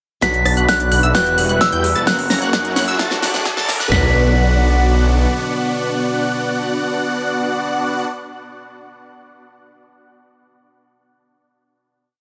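Huge, detuned supersaw chords carry a euphoric, powerful festival progressive house build, their open-voiced gated pulses colored by phaser, dub echo and a sweeping low-pass filter. Beneath them a thick, menacing detuned saw bass sits up front with saturation and sidechain pumping, tracking the chord rhythm until 5.3 seconds. A punchy big-room dance kit drives the build with four-on-the-floor kick, toms and a layered snare fill, while crisp programmed hats, rim clicks, shaker and a backbeat snare add tape-warm detail, and a very quiet riser climbs into the final chord at 3.9 seconds. Up top, a soft, pure FM bell sings hook phrases through chorus and dub echo, and a bright plucky unison lead arpeggiates in the background, doubling the chords an octave higher. A boxy, picked swing-style acoustic guitar with finger squeak adds syncopated pushes, and a warbling vintage pad holds long chords beneath everything before the final chord rings out to 8.1 seconds.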